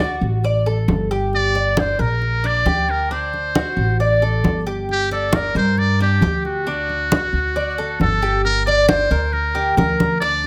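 Set in a light reverb, this short clip cut from a longer Cuban son and guajira piece moves at a danceable 135 BPM in G harmonic minor, with a warm mood. A buzzy, brilliant trumpet in a metal mute carries the jazz-style solo melody up front with light vibrato and a smooth top, bathed in plate reverb, while the double-stringed tres picks metallic arpeggios, some strings doubled at the octave. Beneath them a woody, thumpy gut-string upright bass plays pizzicato, and ringing, low-tuned congas struck with hard hands enter at 0.4 seconds, as the D, Gm and D7 changes lead into a new section at 8.4 seconds.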